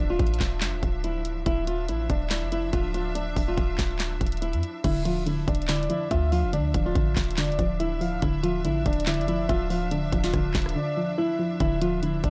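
Hip hop trap in D minor at 142 BPM with a half-time feel, this brooding, hard-hitting passage is cut from a longer piece and opens on a Dmadd9 chord. A dark, fingerpicked flamenco guitar carries the melody through a low-pass filter, with audible finger squeaks on fresh strings, while a rich symphonic string section holds biting, intense bowed chords with light vibrato. A clean, boomy 808-style bass with a sine tone, fast attack and decaying notes anchors the low end, and the electronic trap kit, up front with a hard-clipped kick, sharp snare, bright hats, handclaps, rim clicks and crash, enters at 0.2 seconds and drops out briefly from 10.8 to 11.6 seconds. From 4.8 seconds a soft, round filtered pluck with a sub octave and chorus joins as accompaniment, and from 5.7 to 11.2 seconds a breathy, flute-like synth lead with vibrato and tape echo adds a second line high above. The whole has a dry, gritty hardware sound set in a digital ambience.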